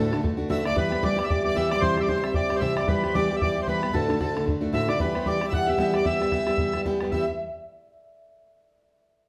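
A swung, driving 4/4 pulse at 227 BPM carries this spirited Celtic reel in E minor, with a boomy, open bodhran beneath an up-front picked steel-string guitar whose warm tone shows the odd finger squeak as it moves through D, Em and C. A reedy, full accordion leads the melody, while a bright, lightly vibratoed bowed fiddle and a ringing, thumb-plucked concert harp sit in the background on a second line, the harp sustaining until 7.8 seconds. The band plays live together in one room, bathed in a wet, large studio reverb, in this brief cut from a longer tune.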